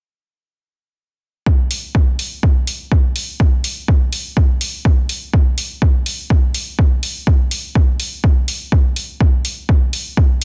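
Dramatic and cinematic in mood, this techno passage, cut from a longer piece, runs at 124 BPM in a straight 4/4. An electronic kick drum enters at 1.5 seconds and carries the pulse until 10.3 seconds; it is punchy, layered and sits up front, re-recorded in a small room and touched with studio reverb. An electronic hi-hat joins at 1.7 seconds, overdriven and layered, also placed up front, with sidechain pumping and its own studio reverb. Together the two drum parts make up a single section, giving the passage a stark, percussion-only character. The overall room sound is dry, and the master is dense and heavily limited in a modern style.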